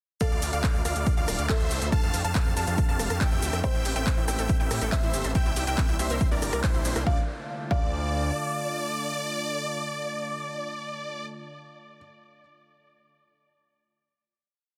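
Bittersweet and driving, this complete uplifting trance piece in D minor runs at 140 BPM in 4/4, opening straight into a drop where a huge, euphoric supersaw lead carries a repeating riff in thirds and sixths with phaser, pumping and dub echo, over a punchy, tape-warm four-on-the-floor electronic kick, an overdriven big-room dance kit of claps, hats, rim and shaker, and a gritty, saturated synth bass rolling in sixteenths. A felt-muted upright piano with audible action noise plays its own repeating riff in the background, a very quiet unison pluck doubles the anthem line, and a lush chorused pad holds sustained chords through Dm, F6, Am7 and C7. A bright unison pluck arpeggio joins at 3.6 seconds, and after a band accent at 6.6 seconds the drums fall away as a final Dm chord rings from 7.1 seconds in a dense, heavily limited, dry mix.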